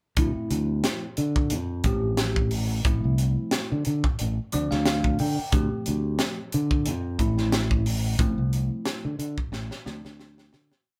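From the very start, a crisp fusion drum kit, a fingered electric bass and a bell-like tine electric piano set up a driving, funky electric jazz fusion groove in D minor, opening on a Dm9 chord. The tempo sits at 90 BPM in 4/4 with a light sixteenth-note swing. The acoustic kit plays a funk groove on hi-hat, tight kick and high-tuned snare, up front in a small, pumping room. The electric bass, direct and amped with a warm tone, lays down a syncopated riff up front in the mix. The electric piano, bright and clean through a phaser, pushes the chord rhythm with rootless voicings and steps forward with a fill at 4.2 seconds. The band plays live together in one room with moderate reverb, and the piece fades out from 8.2 seconds as the drums close with a fill at 9.5 seconds.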